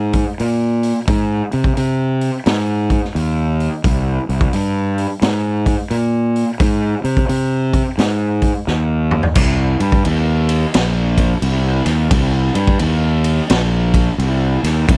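Sludgy and heavy, this excerpt of stoner and doom metal in C minor moves at 87 BPM in 4/4, with a swung eighth-note feel. A fuzz-laden fingered electric bass carries the low end from the very start, its overdriven tone bright, growly and pushed up front as it ranges from Bb1 to C3. A raw garage drum kit joins at 0.1 seconds, sounding like a small acoustic room with a mid-forward, gritty, saturated character, a high-tuned snare, a punchy kick and a rolled-off top end, alongside hi-hat, ride, crash and toms. A drum fill at 8.7 seconds leads into a new section at 9.4 seconds, where the bass and drums carry on together to the cut at 15.0 seconds. The dry, close production recalls a 1970s studio, with little reverb, keeping both parts immediate and in the listener's face.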